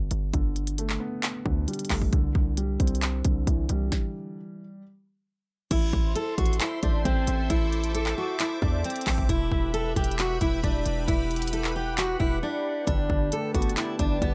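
A dry, close-sounding excerpt of dark, melancholic half-time trap at 134 BPM, built on a punchy, sine-based 808 bass with a noise layer and an electronic kit with a hard-clipped kick, sharp snare, crisp hats, handclaps and crash, both sitting up front. A mellow, boxy grand piano with audible action noise and deep lows carries the opening Gadd9 and Cadd9 chords, stops at 4.8 seconds and returns at the close. From 5.7 seconds a full-bodied, fingerpicked jumbo acoustic guitar with finger squeak takes the melody over Am and Em, above an airy, detuned sawtooth pad with chorus, a filter swell and a slow attack.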